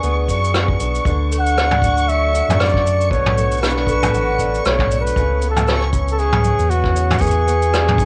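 A mellow, up-front flugelhorn carries the melody from 1.4 s, playing a jazz-style solo line with scooped notes between F#4 and F#5, its tone roughened by 12-bit sampler grit and cassette tape. This short cut from a longer folktronica piece moves at 117 BPM in 4/4 with a light swing on the sixteenths and a hopeful, warm mood, passing through E7, D, Bm7 and C#m7 before returning to E7. Beneath the horn, a fingerpicked twelve-string acoustic guitar spins shimmering, octave-doubled arpeggios with a boxy archtop body, dressed in sampler grit, cassette tape and tape echo. A round analog bass blending sawtooth and sine lies deep and dark, thickened by tube saturation. A vintage brush drum kit stands up front with cabasa, rim click and toms, joined at 0.3 s by a tight kick; both sound distant and roomy in a small room, with a rolled-off top and cassette tape coloring. High above, a reversed, swelling texture holds a brilliant, detuned, granular C#6 with its own built-in reverb and a dreamy long release, and the whole recording has the character of a home cassette recording with light reverb.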